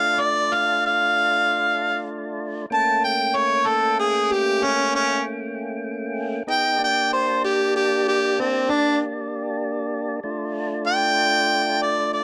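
A slow 12/8 blues at 64 BPM in D minor, brooding and mournful, moving through Dm, A7b9 and Gm before settling back on Dm at 10.2 seconds in this short cut from a longer piece. Up front, a warm, close-miked harmonica plays a jazz-style solo with overdrive, light vibrato and scooped notes, while a warm, fat, clean tonewheel organ holds sustained chords beneath it, its key click and vibrato colored by a slow rotary speaker. A light reverb gives the pair a sense of space.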